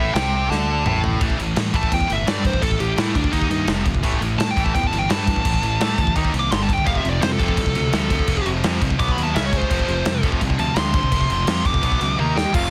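Relentless and heavy, this short heavy metal excerpt drives forward in a straight 4/4 and plunges almost at once into a lead electric guitar solo that runs from 1.2 seconds nearly to the end. The dark, high-gain lead guitar carries the melody, climbing as high as D6, its distorted tone trailed by a digital delay. Beneath it, a stack of bright, picked rhythm guitars grinds out the riff in the background, one of them double-tracked and dropping out before returning at 6.8 seconds. A fuzz-soaked fingered electric bass adds a punchy, overdriven low end, while an up-front acoustic kit with a punchy kick, medium-tuned snare, toms, crash and china cymbals rolls through fills near the start and close. A second dark lead guitar line surfaces only in the final moments, and the whole sits in a dry, dense, heavily limited modern master.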